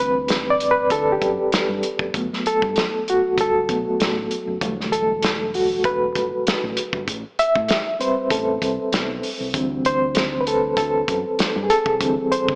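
A bright, reedy electric piano and a round, punchy fingered bass open this lush 1970s-style soul groove, with a soul drum kit of hi-hat, kick and snare joining at 0.3 seconds. Set at 97 BPM in 4/4 with a light swing on the sixteenths, the cut has a warm, romantic mood. The electric piano carries the solo from start to finish, its tone lightly overdriven and pulsing with a fast tremolo, sounding up front as if through its own built-in speakers. Underneath, the dark bass sits low in the mix while the kit, recorded in a small room, offers a tight kick, a medium-tuned snare and a rolled-off top. The harmony moves through D9sus4, Gmaj9, Em11 and Am7 before returning to D9sus4. Light reverb and a small-speaker character give the whole passage an intimate, vintage feel, and this 12.6-second excerpt is cut from a longer piece.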